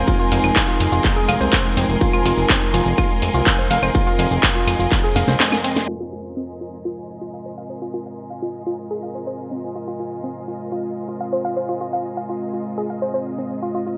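Bright 1980s-style digital production with light reverb frames this melancholic, hypnotic melodic techno excerpt in F minor at 124 BPM, where a deep, dark ambient pad sustains chords and a lush, distant string section adds texture over woody wave-folded pluck arpeggios with chorus and delay, a fat detuned analog bass and a very quiet overtone-sweeping drone drop out by 5.9 seconds during a drum fill, a distorted kick stops at 5.0 seconds, and an up-front techno kit with a cracking snare, warm hats, claves, handclaps, ride and shaker drives on through a filter sweep as the harmony moves from Abadd9/F to Fm.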